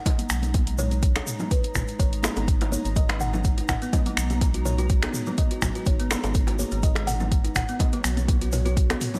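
This afro house excerpt opens with a kalimba melody, woody and hollow with a thumbnail pluck and a trail of delay, floating over an ethereal pad whose detuned, chorused chords sit in the background with a slow attack, long release and built-in reverb, pumping gently against the beat. An up-front, tape-warm electronic kick anchors the groove, joined by a layered deep house kit of finger snaps, metallic hats and toms, while high-tuned congas with hard hands, tight bongos and a grainy tube shaker add a lightly swung, earthy patter behind them. A round, dark analog bass with a fast attack and wave-folded edge enters at 0.3 seconds, breathing with sidechain pumping underneath. At 3.1 seconds a second, softer kalimba arrives with mellow fingertip-plucked arpeggios in a lower register, also echoing through delay and pumping with the sidechain. The harmony rests on G#madd9 before shifting to B/G# at 6.8 seconds, keeping the mood hypnotic and grounded within a small room ambience.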